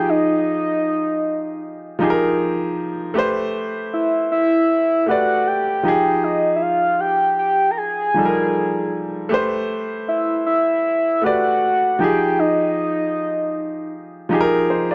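A soft octave-layered synth lead, round and dark with vibrato and a touch of chorus, phaser and delay, sings a longing late-night R&B melody over a polished grand piano at a lightly swung 78 BPM, the chords shifting between Fm9 and Am9 in a moderate stage reverb until the lead stops at 13.9 seconds and the piano rings on to 14.9.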